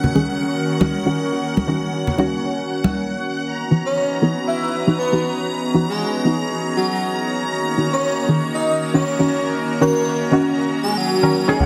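A swung 4/4 groove at 118 BPM drives this hypnotic, moody deep house excerpt, where ringing hand-played congas open briefly beneath a warbling tape-like pad, a breathy nasal pad and shimmering vintage string-machine violins sustaining D#m7 and C#m11 chords, while muted, detuned dub chord stabs with lush chorus and digital delay carry a filter sweep through a build-up, an airy dreamy lead takes the melody from 3.9 s, and a smooth synth bass and a barely audible breathy jazz flute appear only at 11.6 s, all bathed in wet echo-chamber reverb and a dense, heavily limited master.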